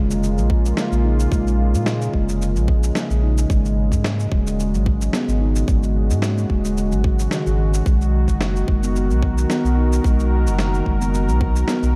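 A detuned, warbling analog pad, a ringing steel tongue drum struck with rubber mallets, and a round sine sub bass open this mystical organic downtempo cut at 110 BPM in G# dorian; the pad holds sustained chords through chorus, sidechain pumping and shimmer reverb, while the tongue drum's meditative arpeggios trail tape echo. Gritty, compressed electronic cabasa and snare enter at 0.1 seconds and a tight electronic kick sits up front from 0.5 seconds, both in studio reverb, over a lightly swung sixteenth-note feel. The chords move from A#m7 to G#9sus4 to Bmaj7 in a dark, warm production, taken from a longer piece.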